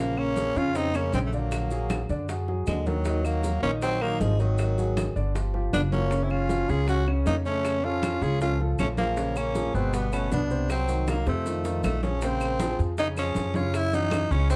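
Sophisticated and sultry, this Afro-Cuban jazz excerpt in Bb minor moves at 157 BPM, with a raspy, growling tenor saxophone carrying the melody up front in plate reverb over a growly pizzicato upright bass, a deep-sustained grand piano, a bright growling trombone second line that stops at 12.0 seconds, and background congas, tight bongos, woody claves and grainy maracas, while a drum fill at 11.1 seconds leads into a new section at 12.2 seconds in a dark production.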